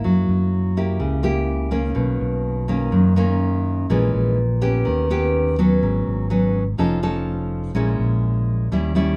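A moderate studio reverb gives this short bossa nova fragment a sense of room, though lossy compression artefacts cloud the sound. At 125 BPM in a straight 4/4, the mood is melancholic and smooth, with a nylon-string guitar sitting up front from the opening second. Fingerpicked on fresh strings, the guitar has a full-bodied, deep classical tone with audible finger squeak, ranging from F#2 up to A4. Beneath it, a fingered electric bass enters at 0.1 seconds with a round, amped character, moving between F1 and F#2. The harmony drifts through rich, tense colours, from F#7b9 to Bmaj9, then A#m7b5, D#7alt, G#m7 and F7b13 before returning to A#m7b5 as the fragment ends at 9.2 seconds.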